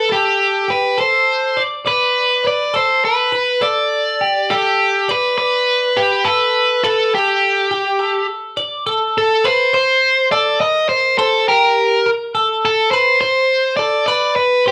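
An up-front, overdriven electric guitar carries a warm, picked melody through this wistful, playful rock piece in 6/8, while a bright, twangy, compressed twelve-string electric guitar plays clean picked arpeggios beneath it, and the chords shift from a lingering Am7 to Amadd9, Gmadd11 and a rootless G once the second section arrives at 8.9 seconds, all set in light reverb with the feel of a band playing live in one room, cut from a longer performance.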